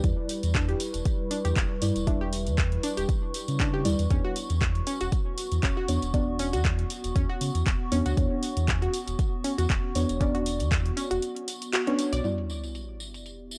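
Warm and late-night in mood, this deep house excerpt sits in a swung 4/4 groove, moving from an Em7 to a Bmadd9/E and back. An overdriven, layered electronic kick drum sits up front beside a dry, punchy analog drum machine supplying handclaps and filtered hi-hats, while a jingly, close acoustic tambourine adds a quiet shimmer. A deep, full sine sub bass with an octave pumps with sidechain compression, and a soft, vintage chord stab with chorus and analog delay carries a filter sweep through most of the passage. Underneath, a warbly, nostalgic tape-like pad of detuned square and triangle waves holds lo-fi sustained chords with built-in reverb. From 0.5 seconds a round, wave-folded analog pluck spins bright arpeggios, also chorused and delayed. The kick drops out at 11.2 seconds, a band accent follows, and at 12.2 seconds an up-front sub drop hits as the pad's filter sweeps, all captured in a dry, gritty hardware sound.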